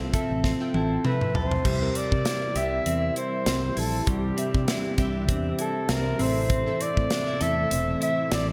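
Bright 1980s-style digital production bathed in lush hall reverb frames this nostalgic, moody pop excerpt at 99 BPM, where glassy digital keys with chorus, a clean, compressed electric guitar riff under lush chorus, punchy fingered electric bass and an up-front studio drum kit with gated reverb and a fill from 0.4 s support a distant, roomy flugelhorn melody with delay and scooped notes entering at 0.8 s, joined at 2.5 s by silky, warbling string-machine chords in the background over Fmaj7, C and Am.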